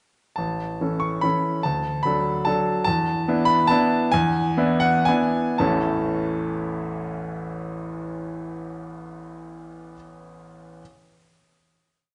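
A classical piano waltz, sparkling and graceful in a flexible rubato 3/4, played by a solo bright grand piano with a brilliant, intimate, up-front tone, audible action noise and long sustain, carrying a single-line melody over a waltz bass through a brief opening phrase that slows from 2.3 seconds before settling on a final chord at 5.6 seconds, all heard in a recital hall with moderate reverb.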